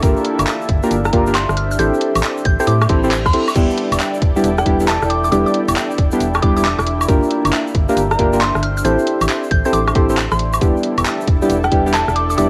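Swung sixteenths at 136 BPM drive this bouncy, skippy two-step UK garage excerpt in E minor, where a tight electronic kick (stopping at 11.8 s) and a garage kit of bright hats, handclaps, rim clicks, woodblock and crash sit alongside a grainy tube shaker, a hollow organ-like FM bass, up-front deep mellow chord stabs with tape echo, a woody mallet-like pluck melody with phaser and tape echo, a smooth sidechain-pumped analog pad, a blurred granular cloud pad and a brief reverse cymbal at 2.9 s, all cycling Gm7, Am7 and Em7 through a lo-fi cassette haze with vinyl crackle and light reverb.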